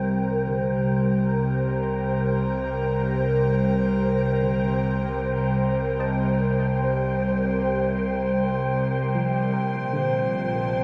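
A breathy pad with chorus and phaser sits up front from the start, holding a Cm9 chord over a dim, wind-like tuned noise texture, very quiet round plucked arpeggios, and a deep sub bass fading in from the background. At 0.5 seconds a very quiet, organ-like drone joins, and at 9.5 seconds the harmony moves to Bbmaj7 in this reflective, serene ambient piece in C dorian at 76 BPM. The dark production is drenched in a huge reverb, giving the slow 4/4 music a vast, hazy calm.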